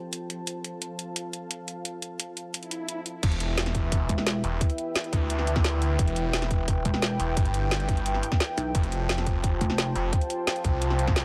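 Dark technical drum and bass at 174 BPM in E phrygian, this cut from a longer piece feels futuristic and mechanical. It opens on a deep, moody analog pad of detuned sawtooth and triangle tones with a sub octave, slow attack and long release, its sustained chords colored by chorus and sidechain pumping, while a layered electronic kit with a woody snare, metallic hats and crash cymbal sits up front. A brief electronic swell at 2.6 seconds leads into the drop at 3.2 seconds, where a tight electronic kick and a snarling distorted saw bass enter together. That bass is aggressive and growling, a bright unison of detuned sawtooth and sine layers with a moving notch, overdrive and compression, held up front. A pulsing pluck wobble bass adds heavy, saturated, chorused weight in two appearances, briefly at 4.1 seconds and most fully from 6.9 to 9.9 seconds, as the harmony moves from F to E minor and back to F. 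The mix is dry, with little reverb, and the drums carry a small-room character.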